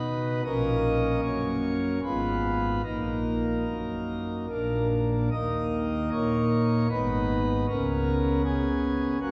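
Grave and dark, this short classical fragment is a chorale-style piece for solo pipe organ in Eb minor, cut from a longer work. It moves in 3/4 at about 75 BPM, though the beats are uneven and the rubato lets the pulse breathe freely. The organ's principal chorus sounds full, with a romantic voicing that spans from Gb1 up to Eb5 and sits up front in the mix. The harmony passes through Gb/Bb, Fdim/Ab and Ebm/Bb before reaching Bb at 4.5 seconds, then moves on to Eb5, Abm and Db5. A wet church reverb with a 3.3-second decay surrounds the instrument, and the listener seems placed further back in the room, giving the chords a spacious, cavernous halo.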